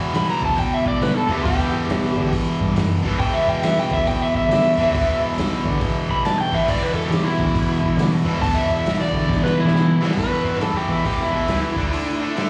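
An overdriven slide guitar carries a brooding, smoky solo with slapback echo over a bright, double-tracked distorted electric guitar riff, a growling, punchy overdriven bass and a muffled, lo-fi vintage drum kit with a punchy kick and a drum fill from 9.3 to 10.2 seconds, in this swung 138 BPM blues rock and southern rock excerpt in E minor, heard as a live club gig through the venue's PA with light reverb.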